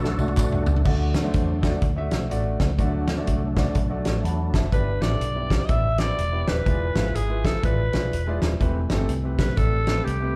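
Uplifting and reverent, this short cut from a longer uptempo gospel piece moves at 124 BPM in 4/4 with a swung eighth-note feel. A natural country drum kit with a fat snare and punchy kick sits up front alongside a dark, round, foam-muted electric bass, opening with a drum fill while a brief burst of close, dry tambourine and group handclaps flickers in the first second. A clear, polished grand piano carries the accompaniment throughout with a slapback echo, and a reedy tonewheel organ with key click, chorus vibrato and a fast rotary speaker holds sustained chords in the background until 4.7 seconds. A piano fill leads into the second passage, where a growling alto saxophone takes the melody, breathy and raspy with vibrato and slapback echo. The harmony moves from D through G6 and E7b9 to Am9/E, and the whole performance comes across like a live gig heard through the venue's PA, with club reverb and light studio ambience.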